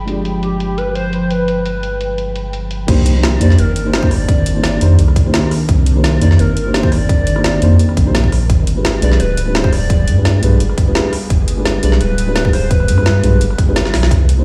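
A deep, saturated sub bass sits up front in this dreamy, rolling liquid drum and bass excerpt, beneath a mellow felt-muted upright piano with delay, an ethereal pad with ensemble chorus in the background, a hollow, woody clarinet-like synth lead with vibrato, and a low-pass filtered drum kit with metallic hats. A tight electronic kick enters at 2.9 s for the drop and briefly drops out around a drum fill at 13.8 s, with the mix sounding as if played on a big sound system in a bare room with large studio reverb.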